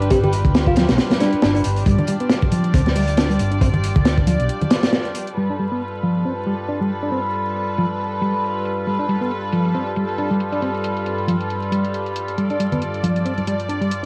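A crunchy, saturated breakbeat kit sits up front in this energetic, raw breakbeat cut from a longer piece, its tight kick and medium-tuned snare swinging over a soft, floating chamber string section playing sustained chords with sidechain pumping, while a bell-like FM electric piano sparkles with chorus and phaser in a brief melodic phrase at the start. Two round, hollow-body short-scale electric basses share the low end: a fingered line until 4.5 s, and a punchy, overdriven picked riff with analog delay throughout. Background congas and a bright, layered electronic hi-hat fill out the groove, and after a break a filter sweep runs over the drums and picked bass from 5.4 s, all wrapped in wet spring reverb, cassette tape and vinyl crackle for a homemade lo-fi feel.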